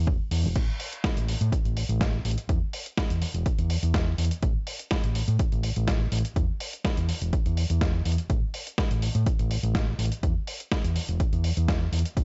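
Dry, gritty hardware sound with its top end cut away frames this funky, groovy filtered disco house cut at 124 BPM, where a dark, round, overdriven fingered electric bass with tube saturation and sidechain pumping runs under a filter sweep from the start, a punchy analog kick drum sits up front from 0.1 seconds, and a dusty, compressed sampler-style soul kit of medium-tuned snare, hi-hat and crash cymbal joins at 0.3 seconds with overdrive, pumping on its hats and cymbals, and a small room ambience.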